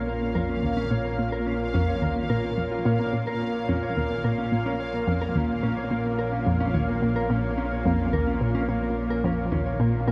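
Cosmic and hypnotic, this ambient, sequencer-driven space music excerpt moves at 108 BPM in Bb minor, with a lush, detuned unison pad holding sustained chords over a warbling analog drone bass, a dark, clean electric guitar playing compressed arpeggios through tape echo, a resonant bubbling texture of random filter steps, and a round, nasal analog pluck riff entering at 0.4 seconds, all bathed in a huge reverb while a filter sweep runs across the synth arpeggio sound.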